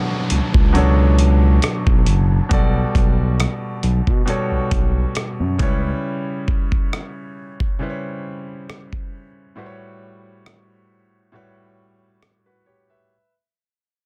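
A dense, heavily limited and nearly dry sound carries this late-night, sensual contemporary R&B fragment, where a clear concert grand piano with deep bass plays accompaniment over Bm7, Gmaj9/B, C#m7b5 and A13, a smooth sawtooth-and-triangle synth bass glides with portamento and vibrato until 5.9 seconds, a gritty sampler-style drum kit with a thumpy kick, hi-hat and rim click keeps a lightly swung groove until 12.4 seconds, and an electronic downlifter sits in the background for the first 6.0 seconds as the whole passage fades out.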